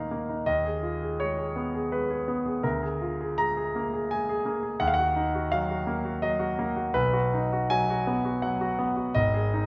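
A clear concert grand piano opens this romantic character piece alone, playing in triple metre with a flexible, rubato feel. The mood is hopeful and lyrical, and the playing ranges from a deep bass low in the instrument up into the upper-middle register. The piano sits up front and sounds present and polished, its notes carrying a short sustain. A moderate scoring stage reverb adds a sense of space around it. The harmony moves from Fm7b5/Eb at 0.5 seconds through Bb7/D to Ebm, then on to B and G#5 at 9.2 seconds, where this fragment of a longer piece is cut off.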